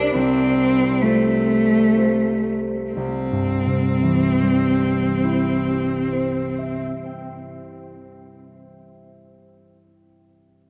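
A single bowed cello leads this tender romantic classical duo, its focused, rich tone carrying the melody up front with a gentle vibrato. Beneath it, an acoustic concert harp supplies the accompaniment, thumb-plucked and ringing, its warm voice sitting equally close to the listener. The music moves in a flowing triple metre with a rubato feel, slowing down through the opening phrase before the harmony settles from an F-over-C chord onto C at 3.0 seconds. The cello's line ends at 6.8 seconds, leaving the harp to continue alone until 9.8 seconds. A long cathedral reverb surrounds both instruments, placing the duo in a vast, echoing space, and the passage is cut from a longer piece.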